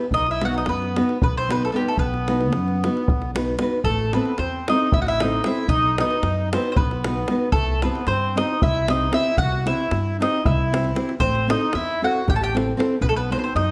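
A moderate recital-hall reverb surrounds this restless, virtuosic Balkan wedding-band excerpt in 7/8, which steadily speeds up throughout and shifts into a new section at 3.8 s. A bright, up-front mandolin carries the melody on picked double strings, joined by a reedy, close-miked accordion second line with slow beating. Beneath them, a full-bodied fingerpicked nylon-string guitar, a woody pizzicato upright bass on steel strings and a tight, dry davul drive the dance.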